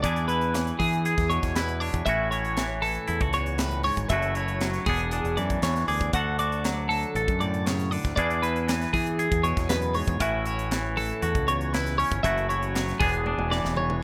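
Playful and intricate, this math rock and midwest emo excerpt moves at 118 BPM in a straight 4/4 in A major, cycling through E7, A6, F#m7 and Dmaj7 chords. A twangy, up-front electric guitar carries the accompaniment while a clean twelve-string electric guitar spins picked arpeggios through a phaser, over a growling, overdriven fingered bass with a punchy, bright edge. A crisp, airy fusion kit with a high-tuned snare keeps time on hi-hat, kick, snare and toms, closing with a drum fill at 13.3 seconds, all in a dry, rough home demo mix.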